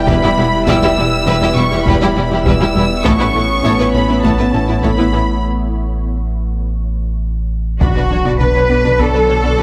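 This tense, futuristic stretch of hybrid orchestral and electronic film score opens at once on a distant, lush violin section carrying the melody high in its register, over a glassy, ethereal FM pad with ensemble chorus and its own reverb, roomy French horns holding chords, a very quiet, woody synth pluck running arpeggios, and a deep, round sine sub bass. Within a moment the full strings join: a second violin line with smooth, even vibrato, expressive violas, rich cellos carrying the bass, and focused double basses, all sitting in the background. A very quiet taiko ensemble, struck with hard sticks in a small room, drives the straight 4/4 pulse at 101 BPM. The harmony moves from E minor to Aadd9, with a break beginning at 5.4 seconds and a drum fill leading into a shift to Bmadd9 at 7.8 seconds, where a huge, bright impact lands in the background. Light reverb lends the mix a sense of space as the excerpt ends.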